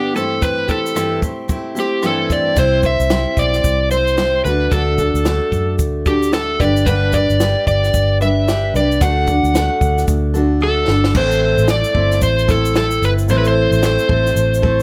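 An overdriven slide guitar, played with fingerpicks and set in plate reverb, carries the melody from the first moment over a full-bodied, freshly strung dreadnought acoustic guitar that is picked up front. This carefree, easy-going acoustic pop excerpt sits in 4/4 with a light swing on the sixteenths, and a compact cocktail drum kit joins at 0.2 seconds with a dry, natural sound: a punchy kick, a high-tuned snare, rim clicks, shaker and dark cymbals, including a crash. At 2.6 seconds a vintage foam-muted fingered electric bass enters, round, amped and close, anchoring the low end as the chords move from C through D and G. A drum fill at 10.6 seconds leads into a fresh section on A minor, where the slide guitar keeps singing on top. The whole excerpt sits in a moderate studio room, giving it a relaxed, friendly glow.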